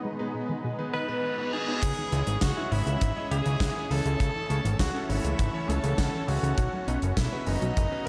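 A straight 4/4 pulse at 101 BPM drives this nocturnal synthwave excerpt in C# minor, opening on a G#m chord before settling onto C#madd9 at 1.8 s and moving to Badd9 late on. A lush, detuned unison pad holds sustained chords in the background through chorus, phaser and sidechain pumping, while a very quiet, punchy unison pluck runs arpeggios under a filter sweep and a clear, vintage electric grand piano adds stabs with subtle chorus and tape echo. From 0.9 s, a distant jazz-style tenor saxophone carries the solo melody with light vibrato, scooped notes and delay. A very quiet electronic reverse cymbal leads into the drop, where a tight kick, a gated 80s kit with bright cymbals and a medium-tuned snare, and a fat, saturated analog bass sitting up front all enter at 1.8 s. The saxophone is joined from 2.4 s by a very quiet, shimmering string machine playing a high second line. The whole mix is soaked in a huge ambient reverb, giving the driving groove a dreamy, after-dark haze.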